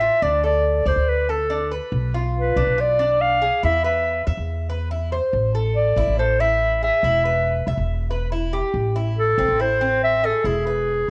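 A smooth, soft-attacked clarinet carries the melody up front, playing solo in a classical style across a range from G#4 to F5. This is a sultry, nostalgic piece of Cuban son and guajira in A minor, moving at 141 BPM in a straight 4/4, cut from a longer piece and tuned to A4 = 441 Hz. Beneath the clarinet, an acoustic Cuban tres picks arpeggios on its double strings, some doubled at the octave, giving a metallic shimmer with a cassette tape coloring. A woody, dark upright bass with gut strings sits up front, its pizzicato notes thumpy between E1 and E2. The harmony moves through D5, Bdim, E5, A5 and Am before landing on E at 10.5 seconds. All three instruments play throughout the 11.1 seconds, set in a small room with moderate spring reverb and the intimate character of a home recording on cassette.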